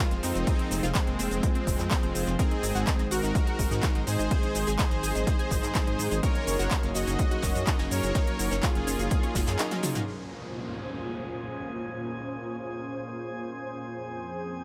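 A straight 4/4 pulse at 125 BPM drives this bittersweet, expansive progressive house excerpt in Bb minor, built on a punchy, up-front electronic kick, a big-room dance kit with crisp hats and low-pass-filtered cabasa, handclaps and toms, a very quiet brush kit on snare and hi-hat, and a deep, rumbling detuned saw bass that pumps against the sidechain. A smooth supersaw carries the melody over round, chorused analog pluck arpeggios, glossy retro polysynth stabs with dub echo, and an airy, breathy pad, moving through Fm, Ab and Gb6 to Bbmadd9. After a drum fill at 9.7 seconds, the drop gives way to the pad and a glassy, drifting harmonics texture that entered at 3.6 seconds, joined by an electronic downlifter from 10.1 seconds.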